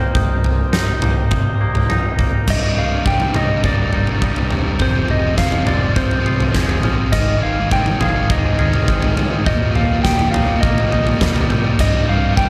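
A steady, straight 4/4 pulse at 103 BPM drives this cathartic, cinematic post-rock passage in C minor, with a huge arena drum kit entering at 0.1 s up front, its punchy kick, fat snare, toms and bright crash cymbals carrying a hall-like scale. Over it, a clean lap steel guitar sings the melody with fingered slide phrasing and volume swells, its twangy tone given slapback echo and analog delay. Beneath sit a very quiet, reedy, breathing hand-pumped harmonium holding sustained chords, a soft glockenspiel played with rubber mallets ringing out bell-like arpeggios, and a compressed electric guitar picking arpeggios through spring reverb and echo, while a growly picked electric bass anchors the low end. At 2.5 s a biting overdriven guitar riff pushes forward and a build-up begins, moving through Cm7, Fmadd9, Ab and Eb. A thick fuzz guitar riff joins in the background at 11.8 s as the harmony returns to Cm7, all set in light reverb and small room ambience in this fragment of a longer piece.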